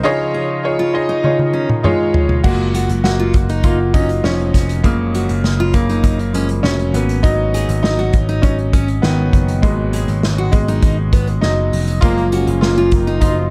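A dark, dry production frames this dramatic, bittersweet piano-driven pop excerpt at 100 BPM in 4/4, where a woody, slightly detuned upright piano takes a clear, up-front solo from 2.4 seconds over a growly picked electric bass, a full-bodied steel-string acoustic guitar riff and an up-front acoustic drum kit played with bundle sticks that enters with a fill at 1.2 seconds, while a warm French horn section sits in the background at the opening and returns at 12.0 seconds.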